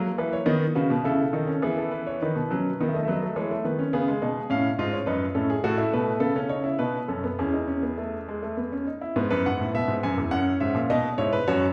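Joyful and lively, this baroque-style three-part classical fugue for solo baby grand piano moves at 105 BPM in a straight 3/4, its clear, intimate and natural tone carrying audible action noise and long sustain within a wet recital hall reverb, as chords such as B7 and C#7 lead into E major from 5.6 seconds, with F#7 arriving later, before this fragment of a longer piece breaks off at 11.7 seconds.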